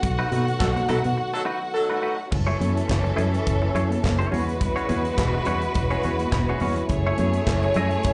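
This fragment sounds like a live club set heard through the venue's PA, with light reverb, a roomy club ambience and a muffled top end. It is a glamorous, danceable disco groove in 4/4 with a gentle sixteenth-note swing, moving from B7 to F#m9 and E69. A punchy, round fingered bass sits up front, under a polished studio drum kit with bright cymbals, handclaps and a medium-tuned snare, while very quiet, high-tuned congas ring behind them. A lush, bowed string section carries the second line with vibrato and a slapback echo, and a twangy, scooped clean electric guitar adds compressed accompaniment with its own slapback and a warbly pitch drift. A mellow French horn section holds sustained chords in the background, and a tight pop-style horn section punches out stabs from 0.6 to 2.2 seconds. The band accents the opening section from the start and drops into a break at 1.2 seconds before the groove settles into its next section at 2.3 seconds.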